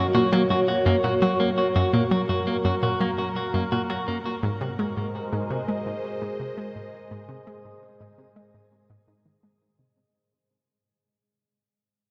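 Expansive and cosmic, this excerpt of sequencer-driven ambient space music sets a swirling, airy phased analog pad holding sustained chords with chorus and shimmer reverb against a round, detuned analog pluck riff with chorus and delay, while a clean, picked electric guitar plays arpeggios through shimmer reverb and delay until 4.3 seconds, all in a vast, echoing cathedral-like space as a filter sweep moves over the synth arpeggio sound and the whole passage fades out.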